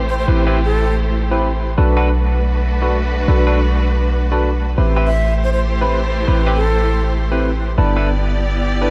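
Nostalgic and atmospheric, this drum and bass excerpt moves at 160 BPM in A dorian with a lightly swung sixteenth feel, as a distant bowed string section holds sustained chords through a low-pass filter over a deep, boomy 808-style bass warmed by tube saturation and sitting up front. A barky tine electric piano enters at 0.3 seconds with lightly overdriven stabs, thickened by lush chorus and dub echo. A breathy, close-miked silver flute opens at 0.1 seconds with brief, unsteady melodic phrases carrying its own dub echo, returning at 5.1 seconds, all within a light reverb as the chords shift from Am7 to Bm7 and back before settling on G6.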